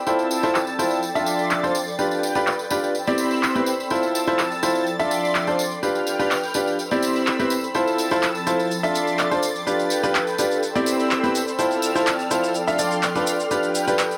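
Two chorused pads open this feel-good, uplifting piano house passage, cut from a longer piece. A silky, detuned analog string pad holds sustained chords with a slow attack and vibrato, while an ethereal, airy pad adds a mellow, reverb-soaked texture beneath it. From 0.1 s a brilliant baby grand piano sits up front, playing a riff through a tape echo over a looping Fmaj7, Dm7, G7, Cmaj7 progression. Tape-warm electronic cabasa and handclaps drive the groove with a filter sweep running across the drums throughout, and a close, acoustic tambourine sits low in the mix. A moderate plate reverb gives the whole passage a sense of space.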